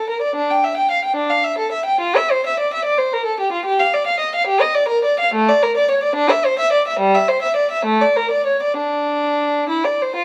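A lone bowed violin with a dark, nasal gut-string tone carries this flowing, solemn fragment of a baroque-style suite movement, played in period style in a rubato 6/8 from 0.0 to 10.2 seconds and captured by close, detailed microphones with light reverb.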